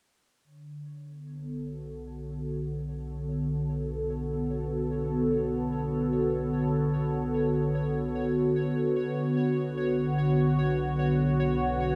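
In free time, this mysterious, hypnotic piece of ambient, sequencer-driven space music rests on a single Bm7 chord in B minor. A swirling, detuned sawtooth pad with phaser and chorus sits up front from 0.4 seconds, holding sustained chords through a filter sweep. A pulsing, tempo-synced triangle texture fades in high above it, and a pulse-width-modulated analog drone on a low B enters at 1.6 seconds, also fading in, while a wet cathedral reverb sets the piece in a vast, echoing space in this clip from a longer work.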